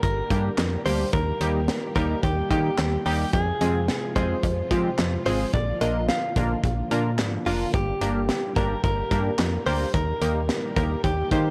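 A clean, direct-recorded electric guitar carries the melody through tape echo from the very start, over a snappy, metallic FM slap bass with transformer saturation, a modern studio drum kit with a punchy kick, medium-tuned snare, hi-hat and handclaps, and mellow string-machine cellos holding slow-attack chords with ensemble chorus in the background. At 0.3 seconds a funky, warbling sawtooth polysynth joins with chorused comping and a filter sweep, adding to this nostalgic, upbeat synth-pop fragment cut from a longer piece. The sound is dry and gritty with light small-room reverb, and the chords cycle through Gm, Eb, Fm and Bb.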